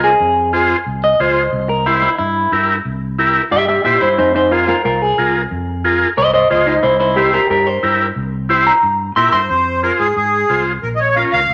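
Driving and danceable, this Latin cut at 181 BPM in 4/4 opens with a dark, clean semi-hollow electric guitar carrying the melody through spring reverb, over a buzzy, heavily vibratoed vintage combo organ and a growly fingered electric bass, as the chords move between Fm and C7. At 9.2 s a reedy, sweet accordion with light tremolo tuning enters on a second line and takes over the solo once the guitar stops at 9.5 s, while the harmony returns to Fm and then moves to Bbm. The playing sits in a wet studio reverb, and the passage is cut from a longer piece.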